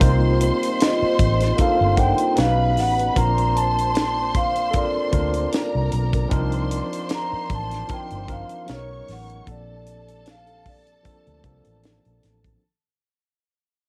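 Lush 1970s-style soul at 76 BPM in Bb major with a lightly swung, romantic feel, where a mellow soft-mallet vibraphone enters at 0.8 s to carry the melody with a ringing, cassette-tinged tone over a bright, clean tine electric piano, a round, punchy foam-muted electric bass, a tight funk kit with a high-tuned snare, distant bowed strings shimmering with vibrato and portamento, and a very quiet, roomy French horn section holding sustained chords, all drifting through lush extended chords as the home-recorded cassette passage fades out.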